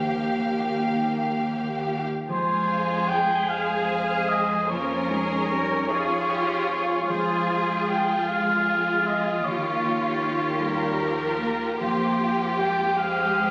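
In a rubato 6/8 at 50 BPM in F minor, this sorrowful, bittersweet cinematic film-score fragment sets a lush, vibrato-laden violin section melody over a dark, expressive second violin line with portamento up front, smooth violas and focused cellos in the background, rich bowed double basses, and bright, ringing thumb-plucked harp arpeggios, while a mellow, distant cor anglais joins the second line at 2.3 s, all heard through moderate scoring-stage reverb as captured on a phone in the room.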